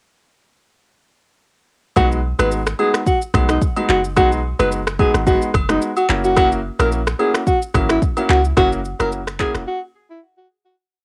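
A cassette-recorded home take in a small room carries this breezy, romantic afrobeats piece at 109 BPM in B major, where a vibrato-laced alto saxophone sings a syncopated pop hook over intimate grand piano chords with audible action noise, a boomy sine-toned 808 bass line with slides, a tape-softened deep house kit of soft kick, snaps, handclaps, rim clicks and shaker, and dry agogo bells tapping a timeline in the background, all starting at 2.0 seconds before the groove breaks at 9.7 seconds and the saxophone carries on alone through the fade to 10.8 seconds.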